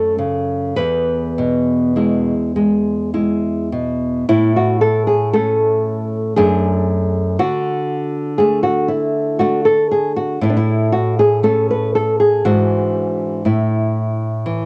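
A thumb-plucked nylon-string guitar opens alone, its warm, small tone sitting up front as it moves from F#m to E in a gentle 3/4 sway. This serene, lyrical romantic duo in A major drifts freely at roughly 50-61 BPM, with a rubato feel that lets each phrase breathe. At 4.3 seconds a second nylon-string guitar enters with the melody, fingerpicked in a classical manner, its bright, fresh-string sparkle set just as close as the accompaniment. Beneath the tune the harmony travels from A through D/F# and D, back to A, then E7/G# before settling on an open A5 near 13.5 seconds. Both guitars carry the soft grain of cassette tape, and light reverb surrounds this intimate home recording, heard here as a short portion of a longer piece.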